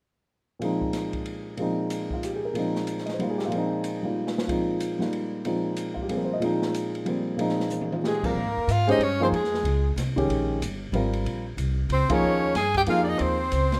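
A bright, close-miked soprano saxophone carries the melody with vibrato from 8.1 seconds in this cool, spiritual modal jazz piece cut from a longer work. A clear, soft-attacked tenor saxophone enters just before it at 8.0 seconds on a second line, and a woody, thumpy pizzicato upright bass with gut strings follows at 8.3 seconds. Before that, an up-front concert grand piano with deep bass and short sustain opens on a Bb9sus4 chord in Bb dorian at a swinging 186 BPM in 3/4. It plays alongside a dark, smooth acoustic drum kit with a boomy kick and rolled-off top that plays two fills, and the band hits an accent at 12.1 seconds, all in a rough home demo mix with light reverb and small-room ambience.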